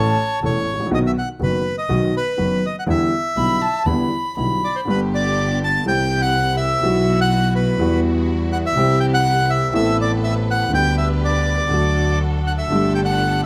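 A moderate studio reverb frames this dramatic, passionate tango excerpt at 122 BPM with a rubato feel, where an up-front reedy bandoneon carries the melody over an intimate, boxy grand piano with audible action noise, a dark, woody bowed double bass played sul tasto, and a single expressive violin with vibrato and portamento that appears only briefly, before the key moves from E minor to G major at 4.9 seconds and a rich bowed string section enters with soft stabs in the background.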